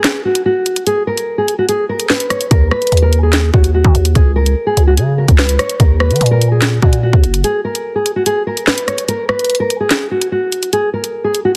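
A dense, heavily limited modern master in a digital ambience, with lossy compression artefacts, frames this ominous, cold drill excerpt cut from a longer piece, running at 146 BPM in a half-time feel in Eb minor. An acoustic nylon-string guitar carries the melody up front, its thumb-plucked classical tone softened by a low-pass filter and trailed by tape echo. The electronic drill kit sits forward too, with a hard-clipped kick, sharp snare, bright hi-hats, handclaps and rim clicks given a tape-warm edge. At 2.5 seconds a growling, buzzy 808-style bass arrives, its saturated sine tone striking with a fast attack and decaying under Ebm and Absus4/Db harmony before dropping out at 7.4 seconds. From 9.1 seconds the kick is muted, leaving the guitar and the rest of the kit to carry the closing stretch.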